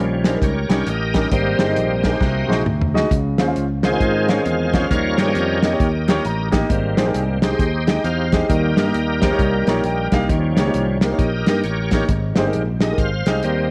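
Uptempo gospel in Ab major, this jubilant, uplifting excerpt swings at 134 BPM in 4/4, cut from a longer piece. A bright tonewheel organ carries a shouting, full solo throughout, its sustained chords lightly overdriven through a slow rotary speaker with chorus vibrato, sitting up front in the mix. Underneath, a grand piano adds intimate accompaniment with audible action noise and natural tone, stepping forward for short fills at 6.0 and 9.4 seconds. A fingered electric bass gives a round, punchy, dark low end. A dry soul drum kit with a fat snare, tight kick, hi-hat and toms plays close and smooth with a rolled-off top, and adds a fill at 2.2 seconds. The harmony cycles through Eb7, Abmaj7, Ab7 and Dbmaj7, all set in a moderate echo chamber reverb.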